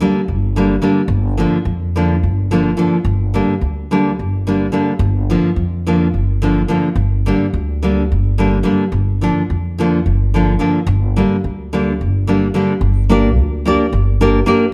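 A fingerpicked, full-bodied nylon-string guitar and a growly, thumpy pizzicato upright bass sit up front from the first moment in this fiery, restless fragment of Balkan wedding-band folk in 7/8 at 215 BPM in G minor, tuned to A4 = 435 Hz and shifting between Gm and Bb/G under a moderate recital-hall reverb before a brief new section arrives at 12.8 seconds.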